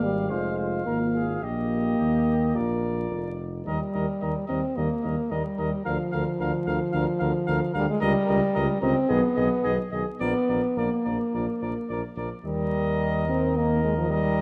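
A stately, triumphant brass quintet excerpt in Eb major at 109 BPM opens with a clear trumpet carrying the melody, a flugelhorn with vibrato on the second line, a very quiet euphonium accompaniment and a soft-attacked tuba bass, joined at 0.3 s by a mellow, up-front French horn. At 3.7 s the music moves into a new section whose harmony darkens briefly through Eb7/Db and Abm/Cb before settling back onto Bb and Eb. Trumpet, flugelhorn and tuba sound roomy and distant in a wet recital hall reverb, and vinyl crackle runs beneath the piece.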